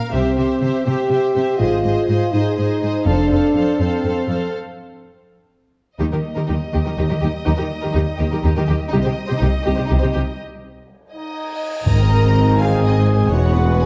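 A 6/8 pulse carries this heroic, majestic cinematic excerpt, where lush, vibrato-rich violin sections sing a melody over a second violin line, smooth violas, focused close cellos and dark, soft-edged French horn chords, with bowed double basses dropping out at 3.3 seconds and returning alongside a mellow tuba and very quiet timpani at 6.0 seconds. After brief breaks, dark, roomy trumpet stabs enter at 11.1 seconds, and a huge, bright cymbal swell rises into an impact at 11.9 seconds as tight, very quiet trombone chords join, all set in a moderate scoring-stage reverb with a dark production.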